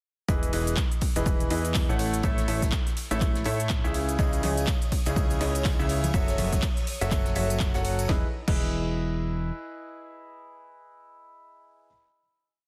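Feel-good and euphoric, this short piano house piece in E major moves at 123 BPM in 4/4 with a swung sixteenth-note feel, launching straight into a drop at 0.3 seconds and running through Emaj7, A, C#madd9 and F#m7 before resolving on a final Emaj7 chord at 8.1 seconds. A bright, brilliant concert grand piano sits up front with a rhythmic, closely voiced chord riff of short sustain, pumping against the kick and trailed by a digital delay, and it carries on through the final chord to the end. Underneath, a punchy, funky analog bass built from sawtooth and pulse waves plays fast-attack filter plucks that follow the chord rhythm, thickened by tube saturation and pumping too. A punchy, tape-warm electronic kick drives a four-on-the-floor pulse, layered with a programmed house kit of cracking snare, crisp hats, claps, cabasa, ride and crash, while a very quiet acoustic breakbeat loop with a medium-tuned snare adds texture. 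From 4.2 seconds, a shimmering vintage string machine holds a high note and sustained violin chords in the background with slow attack and ensemble chorus, joined by tambourine and high congas from a small room. The whole piece has a dense, heavily limited modern master.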